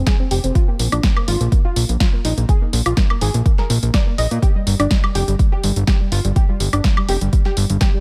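Progressive house at 124 BPM in 4/4 with a straight feel, this short cut from a longer piece sits in F dorian and carries a driving, expansive mood. A soft, round pluck plays arpeggios from G3 to Eb5 across the full 8.0 seconds, its gentle, decaying tone shaded dark by ensemble chorus, dub echo and sidechain pumping. Underneath, a fat analog bass spanning F1 to Bb2 sits up front with a thick, saturated, detuned sawtooth and square-wave sound, also pumping with the sidechain. An overdriven electronic kick drum gives a deep, layered thump up front, while a deep house kit adds hi-hat, woodblock and a punchy snare, both re-recorded in a small room. The harmony moves from F5 to Absus2 at 0.6 seconds and settles on Fsus2 at 4.4 seconds, all in a dry, close mix with little reverb.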